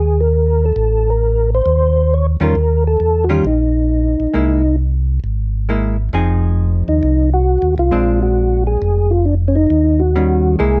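A greasy, swinging soul jazz organ trio piece opens with two tonewheel organ parts sounding together, both up front and turning through a slow rotary speaker. The melody organ is soft and flute-like, with a percussive second-harmonic attack and chorus vibrato, moving between Db4 and Db5. Beneath it, a second organ carries the bass line with a round, dark, clean tone and audible key click. At 2.4 seconds a hollow-body jazz guitar joins at a lower level, adding picked, electric accompaniment in the middle register. The 134 BPM 4/4 groove swings its eighth notes, and the harmony passes through altered and extended chords, including C7alt, Fm7, Bb9 and Eb7, on an instrument tuning of A4 = 438 Hz. The sound is close and detailed with little reverb, and the passage is cut from a longer piece.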